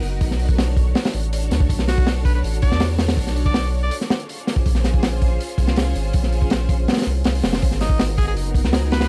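A raspy tenor saxophone cuts through this dark, raw drum and bass cut with jungle roots. Its edgy, forceful solo lines carry a light vibrato, a gritty sampler crunch and a dub echo, first entering at 1.9 seconds and returning at 7.8 seconds. Up front, a crunchy breakbeat kit pairs a punchy kick with a high-tuned snare and hi-hat, its acoustic sound saturated and rolled off at the top, and the kick drops out briefly at 6.9 seconds. A deep, thick sub bass with tube saturation sits beside the drums. Behind them, a soft string machine holds silky, warbling chords through ensemble chorus and vintage grit, moving from Bm7 through A#m7 to G#m7. A small-room ambience, hardware grit and vinyl crackle give this fragment of a longer piece a dry, gritty feel.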